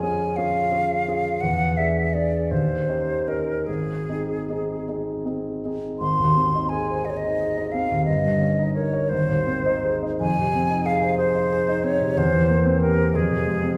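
A slow, rubato 6/8 pulse of 49-63 BPM, counted in dotted quarters, sets this melancholic and solemn romantic duo for flute and grand piano in A-flat major. The silver concert flute carries the melody from Ab4 up to C6 with a hollow, airy metal tone, tongued notes, vibrato and lifted highs, while the grand piano accompanies beneath it, reaching from a deep bass at G1 up to Db5 with a smooth, intimate, vintage character and audible action noise. Both instruments sit up front and play throughout this extract from a longer piece. The harmony opens on Db/F before moving through E7 and Eb7 to settle on Ab at 3.7 seconds. A new section begins at 6.0 seconds and turns toward darker ground through Fm7 and C7/E, closing on F minor. A wet recital hall reverb surrounds the pair, heard from further back in the room.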